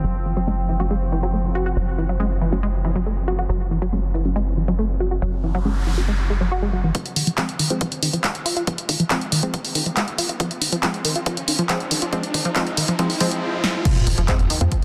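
Dark and relentless, this driving peak-time techno excerpt in F phrygian runs at 139 BPM, opening with a tight, detuned sawtooth synth riff, an up-front sequencer bass with a fast-attack filter pluck, and a deep, wave-folded ambient pad, joined at 0.5 s by muted dub chord stabs carrying tape echo, all breathing with sidechain pumping. At 6.9 s the bass and pad drop out as a punchy analog kick and drum machine enter, re-recorded in a large room, bringing snare, handclaps, hi-hat, toms and crash cymbal while a riser and a filter sweep on the synth build toward a drum fill. An impact lands at 13.9 s, the bass briefly returns, and a huge ambient reverb with a 4.7 s tail surrounds a dense, heavily limited master.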